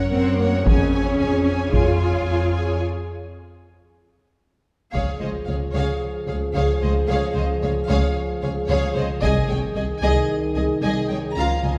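Heroic and epic, this cinematic orchestral cue is a short cut from a longer film score, with lush bowed violins carrying a vibrato-rich melody over a smooth second violin line, soft-attacked violas with portamento in the background, and mellow French horns holding sustained chords. A rich cello section and clear, up-front double basses anchor the bass, while a heavy-sticked taiko ensemble pounds from 0.7 to 6.0 seconds and returns at 9.2 seconds. The whole sits back in a wet scoring-stage reverb, and a huge, bright reverse cymbal barely surfaces at 11.4 seconds.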